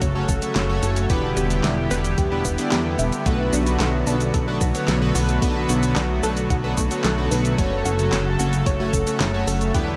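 Nocturnal and driving, this 111 BPM synthwave excerpt in B minor sets a shimmering chorused pulse-width pad pumping against a thumpy, tape-warm electronic kick and a dark, glossy chorused synth bass, while a layered pop drum kit adds a fat snare, hi-hat, handclaps and cabasa, a nasal, detuned analog pluck arpeggiates in the background through phaser and diffuse delay, and a mellow chorused polysynth enters with stabs at 0.2 seconds, all bathed in a huge ambient reverb that leaves the mix dreamy over chords moving from F#m through Em7 and Bm7.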